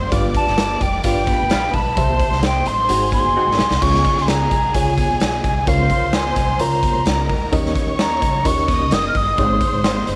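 A small room's ambience surrounds a gritty, saturated drum kit up front, with medium-tuned snare, punchy kick, hi-hat and crash and a fill at 3.4 seconds, giving this joyful cut from a longer uptempo 1960s-style soul piece its raw drive, while very quiet, high-tuned congas sit beneath. A breathy concert flute with vibrato carries the melody over a lush, bowed violin section, a woody pizzicato upright bass and a worn, slightly out-of-tune reed electric piano with fast tremolo. A dark, distant saxophone section adds a soft-attack second line in the background from 1.0 to 3.7 seconds.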